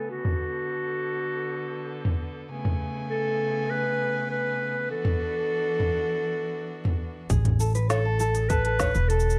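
Pastoral and hopeful, this folktronica excerpt moves at 100 BPM in A major, with a soft-attacked solo clarinet carrying the melody up front through a digital delay. A clear, bowed string quartet holds vibrato-rich sustained chords beneath it, alongside a tape-warm electronic kit with a crisp hi-hat, shaker, snare and toms. At 7.3 seconds the strings stop and a lightly fingerpicked tenor ukulele, a pizzicato upright bass and a tight electronic kick enter, all set in a small, vinyl-crackled room softened by a low-pass filter.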